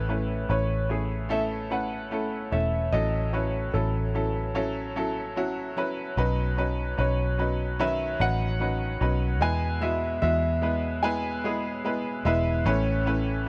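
A dark, intimate production with light reverb and a small-room ambience frames this tender, hopeful pop ballad fragment, cut from a longer piece and moving through Aadd9, F#m7/A, Badd9 and E before returning to Aadd9 at 12.7 seconds. A baby grand piano with audible action noise and long sustain carries the melody, while a brilliant, woody, slightly detuned upright piano sits up front with the accompaniment. Underneath, a round, foam-muted vintage fingered electric bass adds amped weight throughout.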